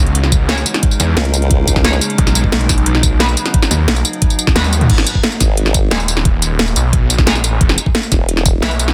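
Driving straight 4/4 at 177 BPM, this dark, futuristic technical drum and bass excerpt in G# minor opens into a full drop, where a knocking electronic kick and an up-front kit of cracking snare, metallic hats, tambourine, toms and crash push under a snarling, detuned saw bass with tube-saturated grit, while a formant-sweep wobble bass bursts in briefly from 1.2 seconds, bright distorted guitar stabs sit in the background, an eerie, inharmonic FM drone with lo-fi sampler grit pumps until 4.9 seconds, and a drum fill with a band accent resets the drop over chords moving from C#m through B to G#m and E5.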